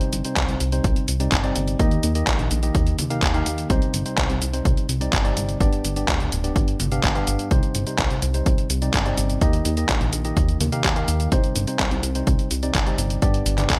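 A dry, close-sounding clip of bittersweet, melodramatic Italo disco in C minor at 126 BPM, cycling through Cm, Eb and G in straight 4/4. A punchy, tape-warm analog kick arrives at 0.4 seconds beneath an up-front, detuned 8-bit drum machine of cabasa, handclaps, hi-hat and toms bathed in gated reverb, while a glossy, dark chorused synth bass blends pulse and sawtooth tones with fast-attack, sustained notes. Over this, a worn, slightly out-of-tune tine electric piano plays overdriven stabs through a combo amp, trailed by digital delay.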